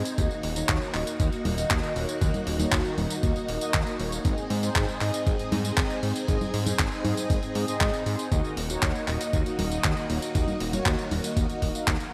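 Bright 1980s-style digital production bathed in a lush hall reverb frames this romantic, playful italo disco fragment, where a gritty, overdriven electronic kick and an up-front, tape-colored 12-bit drum machine with congas, handclaps, hi-hat and tambourine join a fat, detuned sawtooth bass with digital delay, while round, dark synth brass stabs with chorus, vibrato and cassette tape color play against sustained string machine chords given shimmer by phaser and ensemble chorus as the harmony moves from Ebm to Ab and back.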